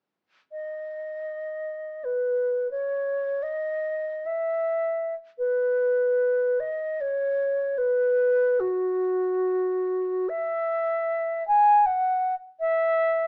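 Set in free time, this serene, nostalgic classical piece for unaccompanied alto flute unfolds in B major, cut from a longer work. The wooden-headed alto flute plays alone from 0.5 to 13.3 seconds, ranging from F#4 to G#5 with an airy, straight tone and crisp attack, its sound at once up front and distant. A moderate studio reverb surrounds the line, heard through a small-speaker sound, and a new section begins at 5.4 seconds.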